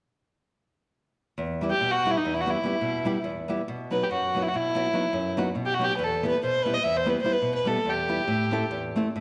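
Set in the wet bloom of a recital hall, this bittersweet, virtuosic Balkan folk fragment opens with a small, fingerpicked nylon-string guitar at 1.4 seconds, moving from Em through B and back before closing on Am, as a single bowed fiddle joins at 1.7 seconds, woody and dark with light vibrato and a smooth top, both parts sitting up front.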